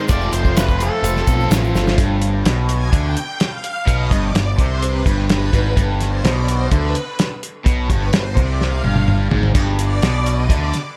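A straight 4/4 pulse at 127 BPM drives this hypnotic, trippy psychedelic rock excerpt, cut from a longer piece, with a cloth-damped, thuddy acoustic kit sitting up front, its tight kick, medium-tuned snare and dark cymbals rolled off at the top, while a grainy egg shaker ticks in the background during the opening moments. A growling, overdriven picked electric bass holds the low end up front, and a cranked, double-tracked stack guitar churns out a bright overdriven riff through phaser and dub echo. A shadowy octave-fuzz lead guitar sketches a short distorted melody bathed in dub echo before falling away at 1.5 s. Over an F chord, a vintage string machine voicing violins lays down shimmering, slow-attack sawtooth chords thickened by ensemble chorus, and when the harmony moves to G at 2.0 s it takes over as the soloing voice. A drum fill arrives at 8.6 s, and the whole mix is steeped in heavy studio reverb and echo.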